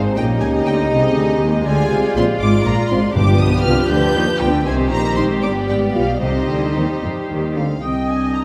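A quick, urgent and dramatic classical-period orchestral movement in a rubato 6/8, where an intimate violin section sings the high melody with light vibrato over a second violin line, a dark viola accompaniment, and a bass of background cellos and pure, floating double basses, every string part bowed sul tasto, while mellow French horns hold sustained chords in the background, round soft-mallet timpani enter at 3.2 s, and an airy, distant flute ensemble and a classical-style clarinet appear at 7.8 s, the whole set in a reverberant scoring-stage space.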